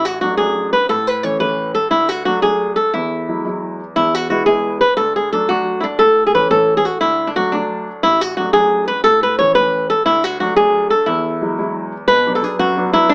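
A fingerpicked flamenco guitar carries the melody up front with finger squeak and a warm acoustic tone, while a clear, woody upright piano with audible action noise supports it underneath in this lively, rollicking Celtic jig in 6/8 at 118 BPM in E mixolydian, set in a small room with a small-speaker sound and cut from a longer piece as it turns toward a B minor chord at 12.1 seconds.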